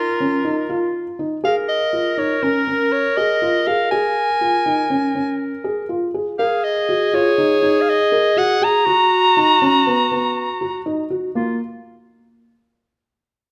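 A warm soprano saxophone carries the melody up front, its smooth top and vibrato giving a pop-style lyricism to this urgent yet pensive piece of contemporary chamber music in an uneven 5/4 meter. Just beneath it, a bright clarinet plays a second line in a more classical manner, also placed up front. A felt-muted upright piano supplies arpeggios in a soft, dark, intimate tone, its short sustain and audible action noise adding a close, tactile quality. The harmony drifts from Dbadd9 through Bbm7, Ebm and Bmaj7 before settling on a bare Bb5. The saxophone drops out at 10.9 s, and the clarinet and piano carry on until 11.6 s, all within a moderate recital hall reverb that leaves this cut from a longer work sounding spacious.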